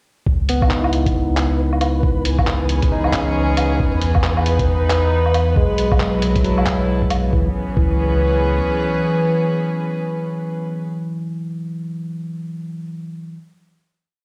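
A barky, up-front electric piano scatters pumping, tape-echoed notes through this ghostly, wistful future garage piece, over a round, tube-saturated sub bass that also pumps, a muffled two-step kick and a skittering, shuffled lo-fi kit of claps, closed hi-hat and low woodblock, while a very quiet grainy texture flickers on one held high note and a reedy, distant chamber string section enters at 2.0 seconds with slowly shifting, pumping chords that hold the final chord from 7.3 seconds, leaving the piano to play alone until 13.4 seconds inside a cassette-tinged, big-room haze.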